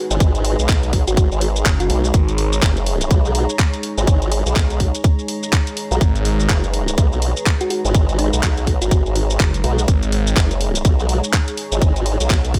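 Gritty and bouncy, this bass house fragment rides a swung groove held on a single minor chord throughout. A tight, up-front electronic kick anchors the mix, joined by a garage kit of handclaps, shaker and bright hats. The main low end comes from a formant-sweep wobble bass, compressed and tube-saturated with chorus, its pulse-wave tone wobbling and pumping with the sidechain. A swirling, thick phased saw bass cuts in only in short bursts, at 1.7, 6.0 and 9.4 seconds. In the background, a moody analog pad with a sub octave and a cloudy, evolving granular pad sustain blurred chords and texture. A round, tine-like pluck with a vintage warble and tape echo plays brief melody phrases, appearing again at 7.6 seconds, all in a dry, close-sounding mix.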